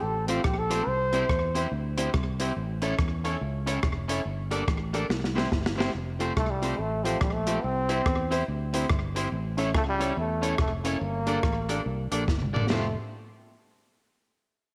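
A clear, up-front trombone carries the melody of this upbeat, joyful ska excerpt in F major at 142 BPM, with scooped notes and light vibrato; it opens briefly and returns at 6.4 seconds. A compact cocktail drum kit with a punchy kick, a smooth, dark sound and slapback echo drives the swung 4/4 groove, with fills at 5.1 and 12.3 seconds, while a round, direct fingered electric bass anchors the low end. A twangy electric guitar at the edge of break-up fills in the accompaniment, and a woody, slightly detuned upright piano adds background stabs with audible action noise, all set in a small room with moderate echo-chamber reverb and tuned to A4 = 436 Hz.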